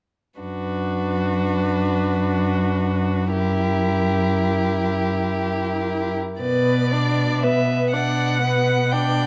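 A string quartet enters together at 0.4 s with a slow, elegiac passage in B minor, cut from a longer romantic movement and unfolding in a rubato 6/8 at roughly 36-42 dotted-quarter beats per minute. The first violin carries the melody in a rich, smooth bowed line that sits a little distant, while the second violin adds an even, silky second part. Beneath them, the viola's warm accompaniment sounds close and expressive, with portamento slides. The cello anchors the bass with a focused, up-front tone, and all four players colour their notes with vibrato. The harmony moves from B minor over F# to a tense F#7b9 before settling back on B minor as a second section begins at 6.4 s, all set in a moderate scoring-stage reverb that gives the solemn mood a sense of space.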